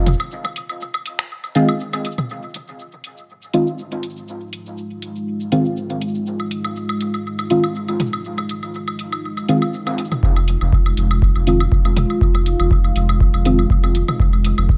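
Cavernous and hazy, this dub techno excerpt moves at 121 BPM in F minor with a lightly swung sixteenth-note feel, resting on an Fm7 harmony. A booming analog drum machine with metallic hats, finger snaps and shaker runs through the echo-heavy mix, joined by overdriven electronic toms and woodblock that are fed into dub echo and pump against the sidechain. A nasal, full-bodied chord stab enters at 1.6 seconds, its decaying hits colored by chorus, phaser and trailing dub echo, and a filter sweep moves across it in the closing stretch. From 4.2 seconds a moody, warbling pad with a detuned, vintage character and a slow attack spreads sustained chords beneath, its own filter sweep running through the middle section. At 10.2 seconds a deep electronic kick and a round, up-front analog bass on F1 arrive together, the bass pumping with the groove as light reverb and digital ambience hang around the whole texture.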